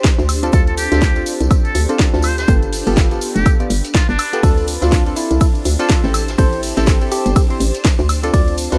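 A swung deep house groove opens this short, smooth late-night excerpt, driven by a punchy, overdriven electronic kick sitting up front and a layered house kit with a cracking snare, bright hats, ride, woodblock and its own overdrive. Beneath them, a very quiet brushed jazz kit adds natural small-room hi-hat, shaker and snare, while a jingly tambourine stays close and dry in the background. A hollow, knocking FM bass bounces in at 0.2 seconds with fast, decaying notes that pump with sidechain compression, and a cloudy granular pad drifts behind everything, blurred and full-bodied in its own reverb. Round analog keys stab through the Dm7, G9 and Am7 changes with chorus, tape echo and filter sweeps. A buzzy, breathy trumpet with a metal mute carries the intimate, jazz-style melody until 4.4 seconds, when a clean, bell-like tine electric piano takes over the lead through tape echo, all set in a small room ambience.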